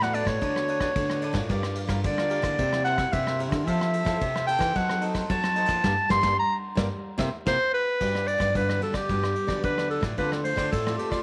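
Samba and choro at 111 BPM in a sunny, joyful mood, this excerpt from a longer piece features a bright, up-front clarinet carrying a classical-style solo melody over a crisp picked cavaquinho and a full-bodied fingerpicked nylon-string guitar with audible finger squeak. A second nylon-string guitar with fresh strings and a deep classical tone plays the bass line from the background, while a vintage brush kit adds dark cymbals, a punchy kick and rim clicks, all set in a moderate spring reverb. The band hits an accent from 5.8 seconds, a drum fill follows, and the music settles into G major at 8.0 seconds.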